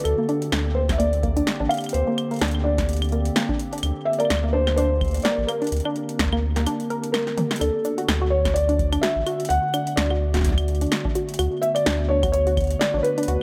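A swung 4/4 groove at 127 BPM drives this wistful, playful IDM excerpt. The electro analog drum machine plays claves, metallic hi-hats, shaker, punchy snare and toms in a small, dry room, and a deep analog kick joins at 0.9 seconds. A drum fill at 7.3 seconds leads the harmony from Bb69 to D6. Underneath, a round sine sub bass sits up front with tube saturation, while a detuned, wave-folded pad holds dark, nostalgic chords through chorus and its own reverb. A lo-fi pluck with a filter sweep spins mellow, evolving arpeggios through chorus and digital delay. On top, a soft felt-muted upright piano carries an intimate melody, its action noise audible beneath 12-bit sampler grit and delay.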